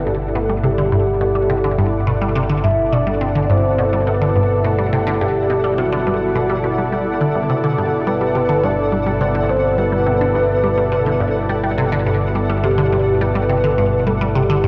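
Luminous and cosmic, this short excerpt of ambient, sequencer-driven space music in G major moves at 105 BPM in a straight 4/4, with a juicy, squelchy resonant blip pluck riff with phaser and tape echo entering at 0.1 seconds over a lush, thick unison pad, an evolving analog drone bass on G1, a round octave-layered lead melody with chorus, tremolo and tape echo, and a pulsing gated texture in the background, all bathed in a plate reverb and the warbly pitch drift of worn cassette tape.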